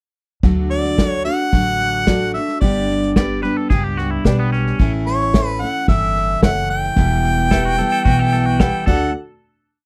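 This is a short, complete honky-tonk and classic country piece with a heartfelt, down-home mood and a straight, steady feel. A small-room acoustic drum kit played with bundle sticks drives a train-beat groove under a punchy kick and a medium-tuned snare, while a woody, thumpy upright bass plays a pizzicato two-beat root-and-fifth line with walk-ups. A bright dreadnought steel-string guitar with fresh strings fills out the middle with full-bodied folk strumming on open chord shapes. A boxy upright piano with short sustain taps out triad chords on the backbeat from 1.0 seconds. Up front, a clear harmonica with light vibrato and a slapback echo carries a motif-based, song-like melody full of scooped notes, and from 3.2 seconds a clean, twangy electric guitar with tape echo adds answering blues licks. The dry, close sound recalls a 1970s studio, and the piece closes on a final hit at 9.1 seconds.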